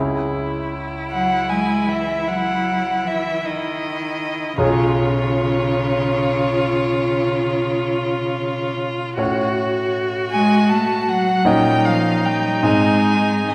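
Classical slow romantic movement for piano quartet, melancholic and elegiac, in C# minor at a rubato 52 BPM in 12/8, where a brilliant, deep-bassed concert grand and an intense, vibrato-laden viola open the accompaniment before a rich, smooth violin takes the melody and a focused cello adds a second line from 1.1 s, all bowed strings and piano ringing in a reverberant recital hall through this fragment cut from a longer piece.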